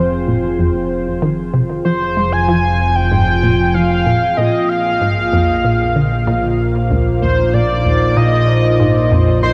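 A shimmering, up-front pulse-width lead carries the melody with retro 12-bit grit, chorus, vibrato and tape echo in this hypnotic, cosmic stretch of sequencer-driven space music, cut from a longer piece. Beneath it, a squelchy resonant blip pluck riff runs through a filter sweep with cassette tape and echo, while an evolving, wave-folded pad holds sustained chords through chorus and phaser, moving from Fm to Bbsus4 at 4.4 seconds. A fat, nasal, saturated analog bass anchors the low end, and the whole dreamy mix is soaked in a huge ambient reverb with a cassette tape patina.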